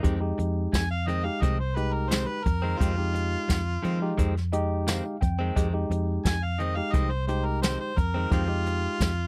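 An overdriven, bright harmonica with light vibrato takes the solo from 0.7 seconds in this brooding, soulful straight-eighth blues fragment, over a barky tine electric piano that adds a fill at 4.2 seconds, clean scooped guitar stabs with a warbly pitch drift, a round foam-muted fingered bass and an airy brushed drum kit with a boomy kick and tambourine, all captured in a dry, close 1970s-style studio sound.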